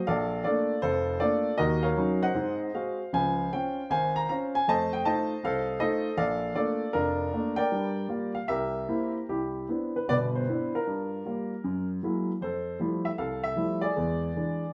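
An up-front baby grand piano rings in a wet studio reverb, its open tone and long sustain giving this relaxed solo jazz fragment a warm glow. Played alone at 155 BPM in 4/4 with a swung eighth-note feel and rubato, and tuned to A4 = 441 Hz, the piano ranges from F1 to Bb5 through changes such as Bbmaj7, Ebm7 and Dbmaj7. At 9.3 s the harmony settles into C major on a Cmaj9, then passes through Gm7, F#9 and Fmaj9 before arriving on E7.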